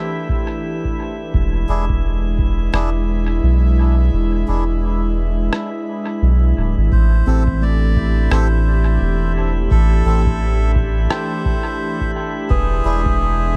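An airy, breathy pad and a drifting glass-harmonics texture open this hazy, spacious ambient dub excerpt in A minor at 86 BPM, soon joined by a deep, tape-warm electronic kick, a round, up-front sub bass, muffled rim clicks and reedy melodica stabs soaked in dub echo; the kick drops out from 4.1 to 6.9 seconds, when it returns alongside a nasal melodica melody with 12-bit sampler grit and a ringing, meditative handpan playing arpeggios in the background.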